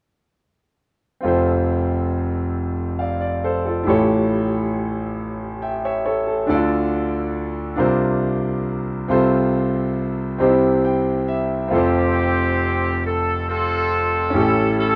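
A rough home demo with light reverb opens on a bright concert grand piano, up front and open, its deep bass and long sustain filling this soulful, reverent gospel excerpt. The slow 6/8 pulse moves at 46 beats per minute in dotted quarters with a straight feel, in F major. The piano carries the accompaniment from 1.2 seconds, ranging from F1 to G5 through chords such as F, A7, Dm, C9sus4 and F/C, and rounds off its passage with a fill at 10.4 seconds. At 11.7 seconds a new section begins as a punchy, vintage horn section enters with the melody, sitting between C4 and A4 in a pop-style ensemble voicing. The horns and piano carry on together over F and A7 until the cut at 15.0 seconds.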